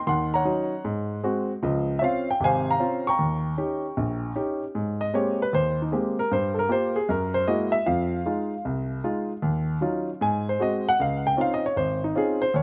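Relaxed and playful, this solo jazz piece swings at 154 BPM in Ab major on a single up-front concert grand piano with deep bass and short sustain, heard dry with little reverb, moving through changes like Ebm7, Ab7 and Dbmaj7 before a solo passage from 4.7 seconds rolls through richer chords such as Abmaj9, Gm11 and Gb9 until this excerpt ends at 12.6 seconds.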